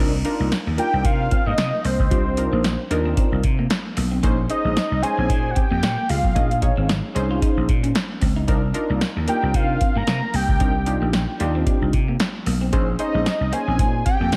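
A lush hall reverb and big arena sound frame this slick, late-night slice of early-eighties boogie funk, set in C phrygian at 113 BPM with a swung sixteenth feel over Cm11 and Bbm11 chords. Up front, a dry analog drum machine with a deep kick, punchy snare and metallic hats pairs with a bright, growly slap bass, while a sawtooth polysynth comp with a filter pluck, chorus and slapback echo fills the middle, and a clean semi-hollow electric guitar riff sits in the background. From 0.8 seconds a fat, detuned analog lead with a sub octave, vibrato, phaser and tape echo carries the melody over the top.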